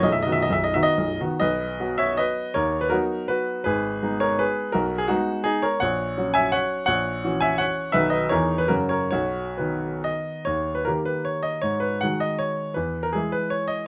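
Graceful and proud, this short cut from a longer classical piece is a romantic triple-time dance in B major for solo baby grand piano, played with dotted rhythms and flexible rubato between 119 and 180 BPM, its clear, present tone sitting up front in a close, detailed, nearly dry recording as the harmony moves from B through G#m and F#7/A# to a cadence on B at 9.1 seconds before turning toward D# and E.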